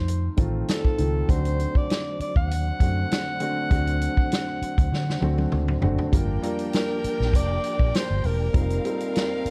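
A lightly swung 99 BPM groove in 4/4 drives this bittersweet, silky snippet of lush 1970s-style soul in G minor, where a subtoned alto saxophone with slapback echo carries the melody over dark, mellow grand piano, a round, foam-muted fingered electric bass and a punchy, up-front vintage drum kit whose fill at 4.9 seconds leads into a close, expressive violin section entering at 6.1 seconds, while a very quiet, flute-like tonewheel organ with fast rotary speaker holds sustained chords from 1.3 seconds in a dry, dark production.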